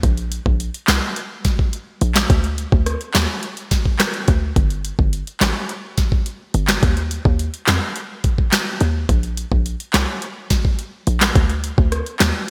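Bright, 1980s-style digital production with light reverb frames this tough, bouncy dancehall groove at 106 BPM, where an up-front electronic afro-pop kit with gated reverb (knocking kick, sharp snare, metallic hi-hat, rim click and handclaps, re-recorded in a large room) plays throughout beside a punchy, tight 808-style bass of sine tone with a noise layer, fast attack and short decay, ranging from G1 to F2 across the full 12.3 seconds.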